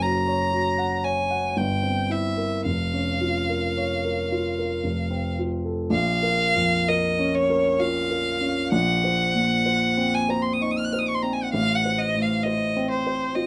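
A single bowed violin carries the melody, its clear, vibrato-laden tone smooth and even, climbing as high as Gb6 while sounding curiously distant even as it sits up front. Beneath it, a dark baby grand piano supplies the accompaniment from deep F1 bass notes upward, its mellow, vintage voice and long sustain giving the harmony a shadowed glow. This is a romantic classical duo in Bb minor and 3/4 time, moving with rubato at roughly 53-66 BPM, and its mood is melancholic and elegiac. The opening passage drifts from Gb through C7/G and Bbm/F to F, and a second passage begins at 5.9 seconds on Bbm before moving through Cm7b5/Bb to F7/A. Close, detailed microphones and little reverb make the recording feel intimate, and the clip is cut from a longer piece, with both instruments sounding from start to finish.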